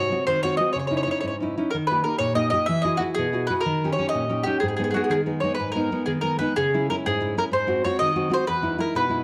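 Wistful and passionate, this short Italian folk serenade moves in a lilting 6/8 at 125 dotted-quarter beats per minute, set in G# minor with tuning at A4 = 439 Hz. A picked mandolin carries the melody between F#4 and E5, its doubled strings giving a round, up-front voice that sits slightly louder than the accompaniment. Beneath it, a fingerpicked nylon-string guitar spans E2 to G#4, bright with fresh strings yet full-bodied and deep in a classical way, with audible finger squeak. Both instruments play throughout the 9.2 seconds, which are cut from a longer piece and heard as a phrase stated twice, the repeat beginning at 5.6 seconds. The harmony moves through colored chords such as C#madd9, Eadd9 and D#7, settling on G#m before closing toward Emaj7. A moderate recital-hall reverb of 1.4 seconds and a dark, warm production frame the pair in a resonant space.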